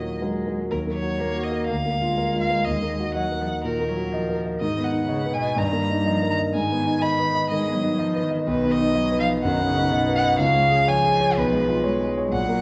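Set in a moderate recital-hall reverb, this cheerful, graceful excerpt from a quick classical-period piano trio movement features an up-front, intimate concert grand whose deep bass and audible action noise give it a vintage feel beneath a rich, smooth violin melody sung with vibrato and a distant, expressive cello second line marked by portamento.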